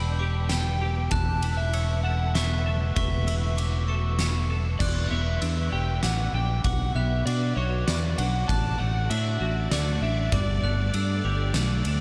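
A brief excerpt of melancholic, cathartic post-rock in 3/4 at 98 BPM and E dorian opens with an overdriven slide guitar carrying the high melody through tape echo, over lush bowed strings holding sustained chords, sparkling bell-like glockenspiel arpeggios and a clean semi-hollow electric guitar picking arpeggios in the background with ensemble chorus and echo. A fingered electric bass sits up front, and at 0.5 seconds a huge arena drum kit joins with a fat snare, boomy kick, crash and ride cymbals. The harmony moves from G/E and Aadd9/E into a second section at 4.8 seconds built on Em7, Bmadd9, D/A and Gadd9, all wrapped in light reverb and small room ambience.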